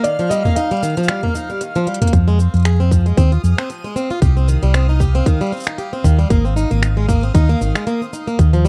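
Delicate and wistful, this folktronica piece in F minor moves at 115 BPM with a light swing on the sixteenths. It opens on a break where a soft, mellow felt-muted upright piano with audible action noise and a metallic, ringing vibraphone in the background carry brief tape-echoed lines over boxy picked acoustic guitar arpeggios, crisp-hatted organic electronic drums with finger snaps, shaker and toms, and a reversed, granular, dreamy backwards swelling texture. After a drum fill at 1.9 seconds, a dark, round hollow-body electric bass sits up front beside a tight electronic kick from 2.1 seconds, under chords moving from Fm through Cm to Abadd9, all captured in a dry, close 1970s-style studio sound with digital ambience.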